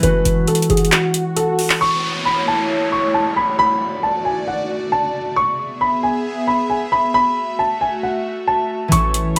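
A half-time trap groove of metallic hi-hats and handclaps opens this dark, hard-hitting hip hop excerpt, with a punchy, tight 808-style bass and ringing fingerpicked concert harp under a boxy, intimate grand piano melody that carries a delay and audible action noise throughout. At 1.8 s the drums fall away and a breathy, warbling vintage pad with chorus rises into sustained chords, while an electronic swell and downlifter sweep through from 0.5 s to 5.4 s. The drums, bass and harp return together at 8.9 s, all in a moderate studio reverb.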